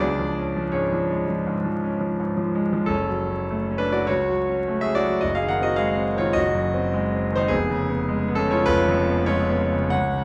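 Brooding and passionate, this fragment of a romantic classical character piece for solo piano moves in a rubato 4/4 between 81 and 110 BPM, tuned to A4 = 436 Hz, with a brilliant, up-front concert grand spanning deep bass to a bright upper register with long sustain, shifting from an opening C# to a second passage at 2.9 seconds that travels through F#m, G#7/F# and C#7/E#, all heard through close, detailed microphones in a moderate recital hall with a layer of vinyl crackle.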